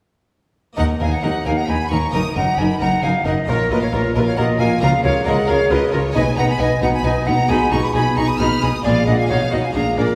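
Dramatic and stormy, this short cut from a longer baroque-style concerto movement with solo episodes drives forward at 134 BPM in a straight 3/4, set in Eb minor. A silver concert flute sits up front with the main melody, its pure metal tone carrying vibrato and a crisp attack even as it sounds distant, while a lush, focused symphonic violin section sings the melody high above it. Behind them, a close, expressive chamber violin section holds a second line and a smooth, even viola section fills in accompaniment from the background. The bass is anchored by a distant, warm cello section and a close double bass section, all the strings bowed with vibrato. A full-bodied, French-style harpsichord with two sets of strings plucks in the background from 0.7 seconds, and the harmony moves from Eb minor through Bb minor and a half-diminished F chord to Bb7 before settling on B, all heard from further back in a wet recital hall.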